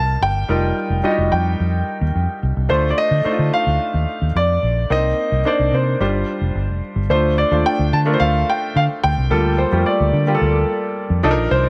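Light reverb and a small-room ambience give this short cut from a longer piece a close, intimate sound, with every instrument sitting up front. It is polished 1980s jazz-funk pop in a straight 4/4 feel, with a nocturnal, urban mood. One grand piano carries the melody in its upper register with a warm, natural tone. A second, clear concert grand supplies the accompaniment beneath it, its deep low end and short sustain treated with a lush chorus. A vintage fingered electric bass, foam-muted, dark and round, adds a punchy, amped low end. The harmony moves through suspended and extended chords, opening on F9sus4 and shifting into a new passage at 7.1 seconds that settles on Gm9/D.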